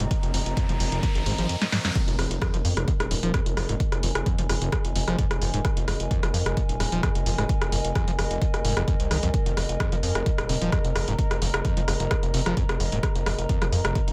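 A dry, echo-heavy mix carries this relentless, intense peak-time techno excerpt at 130 BPM in F minor, where a riser and a swarming, very quiet drone fill the opening 2.0 seconds before a drum fill leads into the drop, while a punchy electronic kick from 0.1 s, an analog drum machine of hi-hat, rim click and snare, a gritty sidechain-pumped synth bass, a squelchy distorted acid bass riff set in the background under lush chorus and tape echo, and a warbling, nostalgic lo-fi pad drive the whole track.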